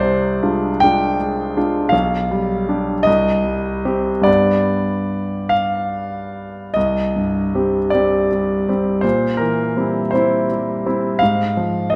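Yearning and melancholic, this romantic classical nocturne excerpt in C minor features a clear, intimate concert grand piano playing solo in a rubato 12/8 at about 47-57 BPM, its deep bass and audible action noise sitting up front within a wet scoring-stage reverb as the harmony drifts from Dm7b5/C through G and Cm toward C7/Bb and Fm/Ab by 11.2 seconds.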